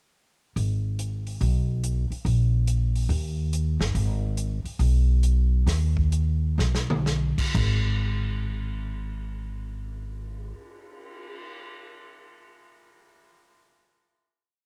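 Dry and intimate, this short home cassette recording is a complete, sultry, brassy big band swing piece in G# minor, moving in 4/4 at 120-142 BPM with a firm swing on the eighths. An up-front, woody pizzicato upright bass plays in two, while a quieter, airy swinging kit with a tape-tinged edge keeps time with sticks on the hi-hat, a punchy kick, snare, toms, crash and a cymbal swell. The tempo slows from 3.9 seconds, a drum fill arrives at 6.6 seconds, and from 7.5 seconds the piece settles onto a long final note.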